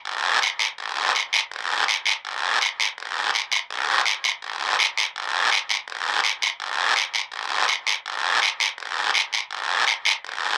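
A lone guiro opens this short Latin excerpt almost at once, at 0.1 seconds, setting a danceable, fiery pulse at 165 BPM in a straight 4/4. Its acoustic scrape is raspy and vintage in character, with a band-limited tone that gives it an old, narrow colour. The instrument sits up front and carries the whole passage by itself through to 10.6 seconds. Around 7.3 seconds the music moves into a second section, though the guiro remains the sole voice. The sound is dry, captured outdoors with barely any reverb, so the scraping texture comes across close and immediate.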